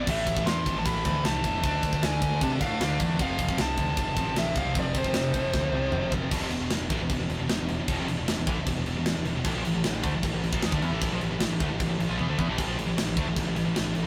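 Aggressive, epic heavy metal at 154 BPM in straight 4/4, cut from a longer piece, opens with a warm, high-gain lead guitar carrying the melody over chords moving from A5 through Dm and F until 6.1 seconds, while a pair of double-tracked riff guitars, one scooped, sit in the background, a growling, overdriven picked bass rumbles underneath, and an up-front, tight drum kit with bright cymbals and an airy big-room sound drives the music, marking the shift to the second section at 6.3 seconds with a fill, all captured in a rough rehearsal-room recording with light reverb.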